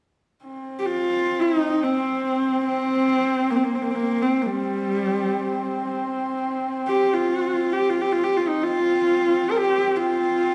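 A bowed horsehead fiddle carries the melody in this vast, windswept piece of Mongolian traditional music, its horsehair strings giving an earthy, husky voice shaped by light vibrato and gliding portamento between G3 and Bb4. Beneath it, a second horsehead fiddle holds a drone on C4, starting at 0.4 s, just before the melody enters at 0.8 s. That drone has a rich, focused sound with vibrato and portamento of its own, sitting close and up front though it is the quieter of the two parts. Both players were recorded live together in one room, and a wet, large studio reverb opens a spacious air around them. The passage is cut from a longer piece and runs as a single section to 10.5 s.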